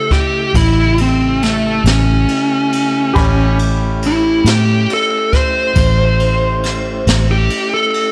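Slow blues in 12/8 at 46 BPM, this short cut from a longer piece has a swaggering, rollicking mood, sitting on a single A9 chord in A mixolydian. A smooth, overdriven lead guitar carries the melody as a solo throughout, dark and picked, sitting up front between A3 and C5. Beneath it, a clear grand piano with a worn, short-sustained tone adds accompaniment higher up, while a mellow tonewheel organ holds soft, flute-like sustained chords with audible key click through a slow rotary speaker. A jazz kit played with brushes enters at 0.1 seconds, with dark cymbals on the ride, a punchy kick and a high-tuned snare that carries soft clipping. A vintage muted fingered electric bass, round and foam-muted, joins at 0.5 seconds and stops at 7.5 seconds, standing up front alongside the guitar. The recording is dry, with little reverb, and sounds blown-out and overdriven overall.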